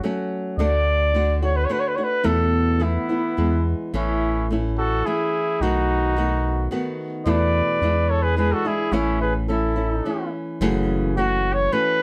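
Light reverb gives this short cut from a longer Mexican folk and mariachi piece a gentle sense of space, and the mood is both romantic and festive. It sits in A major at 108 BPM in a straight 3/4, with a clear, distant trumpet in a classical style carrying the melody up front from start to finish. An acoustic flamenco guitar, fingerpicked with audible finger squeaks, accompanies throughout, while a round, deep analog bass with a dark, evolving character enters at 0.6 s. From 2.8 s a second trumpet, punchy with a smooth top, adds a quieter line beneath the lead. The harmony moves from F#m through D, Esus4, E, A, B7 and E7 back to A, and a new section opens on F#m7 at 10.6 s.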